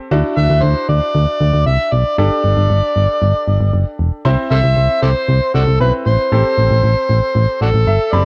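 Wistful yet bright, this short synth-pop excerpt moves at 116 BPM in a straight 4/4, set in D mixolydian with tuning slightly sharp of standard. A bright baby grand piano carries the accompaniment from the start, its brilliant, natural tone colored by a cassette-tape character, and it closes with a fill from 7.6 seconds. A solid FM bass sits low and up front, punchy and round with a dark, digital edge and a fast attack that decays. The lead belongs to an overdriven harmonica entering at 0.4 seconds, gritty and amplified with vibrato, tongue slaps and a pop-style punch, also carrying a cassette-tape tint. The harmony drifts through Dadd9, Gsus2, Cmaj7 and Am7, while light reverb and a home cassette recording give the whole a homemade intimacy.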